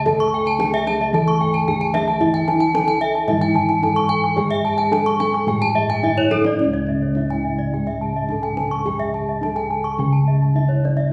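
Up front and dry, the round, beating bronze bossed gongs anchor this hypnotic, brilliant Balinese gamelan passage at 109 BPM in C# pelog, while two bright horn-mallet metallophones shimmer with paired-tuning beats in arpeggios above a mellow padded-mallet melody and a soft, airy lower metallophone, a deep kendang sitting in the background and playing a fill from 6.0 to 6.6 seconds before the second section, all set in a reverberant recital-hall space captured on a phone.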